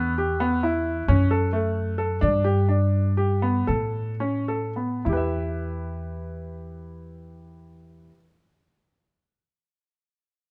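The recording sounds close and detailed, with light reverb around a clear grand piano and an upright bass, both placed up front. This short contemporary chamber piece, cut from a longer work, moves in 11/8 at roughly 205 to 267 eighth notes per minute with a straight feel, and its mood is restless yet hypnotic. In E dorian, the piano plays arpeggios between A3 and E5 with a worn, short-sustaining tone, while the pizzicato bass holds the low end from E2 to A2 with a woody, thumpy sound from its steel strings. The harmony climbs from Em through F#m and G to A, and the tempo slows from 1.1 to 5.1 seconds before the music returns to Em at 5.1 seconds to open a second section. Both instruments play throughout the roughly eight seconds.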